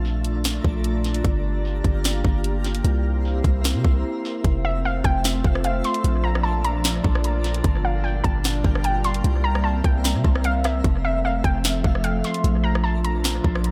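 A deep, boomy 808-style bass sits up front in this floating, dreamy atmospheric cloud-rap excerpt, under a half-time trap kit with a hard-clipped kick, sharp snare, bright hats and tape echo, a dark, nostalgic, warbling tape-like pad with chorus, reverb and sidechain pumping, and a faint, sparkling granular texture, with a brief break at 4.0 seconds before a dusty, mellow lo-fi pluck melody with chorus and tape echo enters at 4.6 seconds in the echo-heavy mix.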